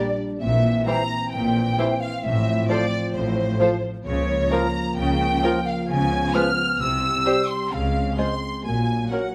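A playful, whimsical cinematic film cue in F major, cut from a longer piece, moves at 131 BPM in a straight 4/4 with a quirky, sneaky mood. A distant violin section carries the melody with smooth, even vibrato, joined in the same high range by a close, pure, hollow silver concert flute. Beneath them a clarinet and a lush second violin section supply inner lines from the background, while a mellow bassoon, a very quiet viola section and a dark, soft-edged French horn section fill in accompaniment and sustained chords. Bowed cello and double bass sections with a focused tone enter at 0.4 s to anchor the bass and drop out at 9.0 s. The harmony slips through colorful turns such as C7/Bb, Bbm/Db, Db7 and Dbmaj7, and the ensemble sits in a moderate recital-hall reverb that lends the orchestra a natural sense of space.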